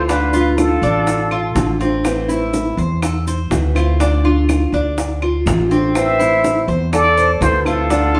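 A plunger-muted trumpet leads this sultry Cuban son and guajira passage: up front, whispered and intimate, with a wah-wah color, vibrato, a soft attack and a smooth top. It plays its jazz-style melody at the opening and returns at 6.0 seconds, shadowed each time by a bright, reedy metal flute with a crisp chiff, set further back as a second line. Underneath, a full-bodied nylon-string guitar is fingerpicked with audible finger squeak, while a Cuban tres adds picked arpeggios with a metallic shimmer from its double strings. A thumpy pizzicato upright bass with gut strings sits up front, and round, low-tuned bongos played with hard hands drive the straight 4/4 groove alongside grainy, close maracas and woody claves set in the background. The band sounds as if it is playing live in one room, bathed in a wet, large studio reverb with a softened top end, in a warm extract cut from a longer piece.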